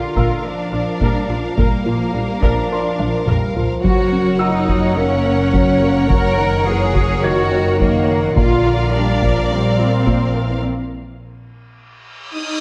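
A tense, vast hybrid orchestral and electronic film cue opens with a lush symphonic violin melody over a background studio violin line, mellow French horn chords, up-front cellos on the bass, a juicy, squelchy blip pluck arpeggiating through chorus, phaser and digital delay, and a soft felt-muted upright piano texture echoing in delay. Almost at once a smooth viola section, dark double basses and close, dry taiko drums with heavy sticks join in, and the taiko play a fill at 3.0 seconds. Around 10.6 seconds the drums, pluck and lower strings drop away for a break, leaving horns, the symphonic violins and piano in a moderate scoring-stage reverb until a huge, bright reverse cymbal rises at 11.9 seconds.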